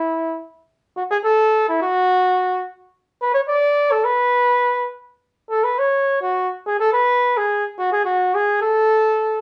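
A clear flugelhorn plays solo from 0.0 to 9.4 seconds in this festive, jolly alpine folk fragment in 2/4, its classical-style line carrying a light vibrato and sounding distant and roomy in a short, wet studio reverb, heard from further back in the room with a softened top end.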